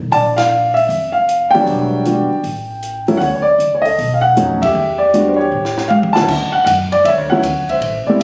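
A swinging, playful jazz piano trio excerpt, cut from a longer piece, moves at a brisk clip with a swing feel. The upright piano carries the melody up front, intimate and boxy with audible action noise and long sustain, ranging from deep low notes to bright upper lines. Beneath it, a woody pizzicato upright bass on steel strings sits quietly low in the mix, while a compact cocktail drum kit with a high-tuned snare and punchy kick colors the time on hi-hat, ride, crash and toms. The band hits accents together at 0.3 and 4.6 seconds, and a drum fill from 5.5 to 6.3 seconds leads into a new section that settles on a major-seventh chord. Captured on a phone in the room, the sound carries moderate club reverb and compression, giving it a live, close-quarters feel.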